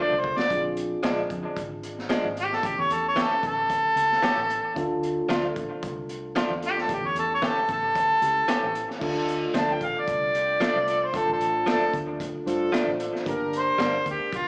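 A brooding, soulful soul blues fragment opens with a short drum fill as a mellow harmonica carries the melody over a tine electric piano, which runs through a combo amp with a phaser. The harmonica sits up front, roughened by overdrive and slapback echo, with light vibrato and scooped notes in a vintage jazz style. A clean, compressed, direct-recorded electric guitar adds picked stabs washed in spring and plate reverb, slapback echo and analog delay. Underneath, a foam-muted fingered bass gives a round, dark low end, while a crunchy, saturated breakbeat kit brings a punchy kick, a high-tuned snare and dusky cymbals to a straight-eighth groove with a faint sixteenth-note swing. At 9.0 seconds the harmonica moves into a solo and a bright horn section enters in the background with loose, sustained chords. The whole performance sounds like a live gig heard through a club PA, with a small-speaker quality and moderate room reverb.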